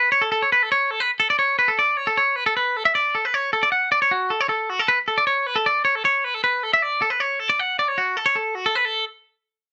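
A twangy, clean, picked electric guitar sits up front and plays alone from 0.0 to 9.0 s, compressed and bright between F#4 and F#5, carrying a wistful yet sunny rock passage in A major at 155 BPM in a straight 5/4, with a new section arriving at 1.1 s, all within a dark production touched by light reverb in this short cut from a longer piece.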